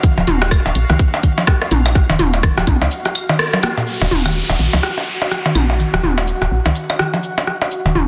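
A dense, heavily limited modern master sits in a moderate plate reverb, giving this short cut from a longer minimal techno track a cool, quirky character at 125 BPM in 4/4, with a 16th-note swing in E-flat minor over a single Ebm chord. An up-front, tight, layered electronic kick, re-recorded in a large room, anchors the opening and drops out after 2.8 seconds. A punchy, tape-warm analog drum machine supplies hi-hat, rim click and shaker, and an up-front minimal click kit recorded in a small room adds claves, blips, rim click and toms with tape echo, both with soft clipping on the snare. Underneath, a woody, round FM bass with a fast attack and dark decay pumps against the sidechain. A mellow, mallet-like FM pluck plays a riff with chorus, 12-bit sampler grit and dub echo, while a bubbling, detuned sawtooth texture with random resonant filter steps shimmers brightly in the background. The band hits an accent at 3.4 seconds, and an electronic downlifter sweeps in at 3.9 seconds as the second section begins.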